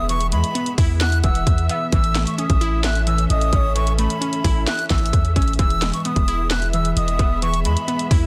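A half-time trap groove in 4/4 drives this triumphant, dreamy hip hop excerpt: the up-front electronic kit pairs a hard-clipped kick and sharp snare with handclaps and warm hi-hats, all roughened by vintage 12-bit sampler grit. Beneath it, a long sustained 808-style bass sits equally forward, deep, mellow and sine-like with a fast attack and a decaying tail. A reedy, airy concert flute carries the melody high above in a straight, tongued tone with delay. A smooth, gliding portamento lead with chorus, vibrato and delay forms a soft second line in the background, dropping out at 3.7 seconds and returning briefly at 7.0 seconds. A crystalline wavetable pluck, detuned with a sub octave and filter sweep, supplies bright chorused accompaniment. Muted symphonic strings hold veiled, lush con sordino chords underneath, while a barely audible downlifter passes at the start, all inside a dense, heavily limited modern master with digital ambience as the harmony moves from E to A and back.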